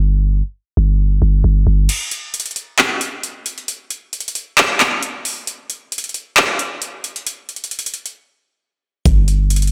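A half-time 4/4 pulse at 134 BPM drives this menacing, melancholic trap excerpt, where a deep, boomy 808-style bass with a dark sine tone and noise layer sits up front alone until 1.9 seconds, then an overdriven electronic drum kit of knocking kick, metallic hi-hats, handclaps and crash cymbal takes over through the break before the bass returns at 9.1 seconds, all under light reverb.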